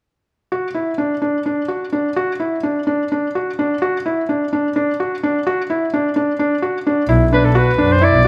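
A felt-muted upright piano opens at 0.5 seconds with soft, intimate arpeggios on a D chord, its thin felt and audible action noise sitting up front in a moderate recital hall. This sets up an urgent yet pensive contemporary chamber piece in 7/8 at 256 BPM in eighths, tuned to A4 = 438 Hz. At 7.1 seconds the harmony turns to B minor as a single bowed double bass enters up close with a rich, airy, reedy gut-string tone, light vibrato and period styling. At 7.3 seconds a mellow, vintage-sounding soprano saxophone joins with a jazz-inflected solo melody full of vibrato and subtone, in a passage cut from a longer work.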